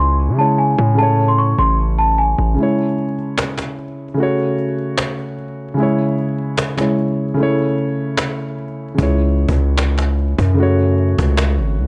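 A bell-like celesta melody opens this dark, hard-hitting trap cut, its sweet, delicate tone filtered and trailed by tape echo, over a mellow concert grand piano with a deep low end and a punchy, heavy 808-style bass. The celesta and bass drop out at 2.6 seconds, leaving the piano to carry the half-time groove through a break, now joined by a woody cajon with faint snares and a touch of vintage 12-bit sampler grit. At 9.0 seconds the 808 returns, its sine body and noise layer hitting with a fast attack before decaying, and it sits up front alongside the piano and cajon. The harmony moves between C#m, A and F#m, keeping the brooding tone steady. A small room reverb gives the sparse arrangement a close, intimate space, and the recording is cut from a longer piece.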